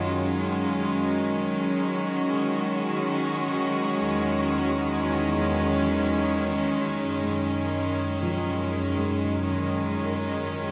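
A rich, earthy chamber string section holds sustained bowed chords up front from the start, with light vibrato and a smooth top, while a nasal, detuned analog drone with chorus and an evolving pulse-width modulation sits in the background until 7.1 seconds, setting a serene, weightless ambient mood in a gentle 3/4. At 7.2 seconds a mellow, thick-felt upright piano enters behind the strings with soft, dark arpeggios trailed by delay, and from 8.0 seconds a very quiet, velvety synth lead with chorus and vibrato carries a small melody. The whole passage, cut from a longer piece, floats in a wet scoring-stage reverb.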